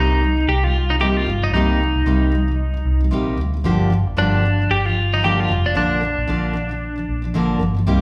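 Pop at 114 BPM in C minor with a gentle 16th-note swing, this wistful, tender excerpt from a longer piece sets a bright, twangy, compressed twelve-string electric guitar melody in spring reverb over a full-bodied, picked jumbo steel-string acoustic guitar and a dark, round, punchy foam-muted vintage electric bass, the three playing live together in a large, reverberant studio room as the chords move from Cm7 to Gm7 to Bb, with the twelve-string stopping at 7.6 seconds.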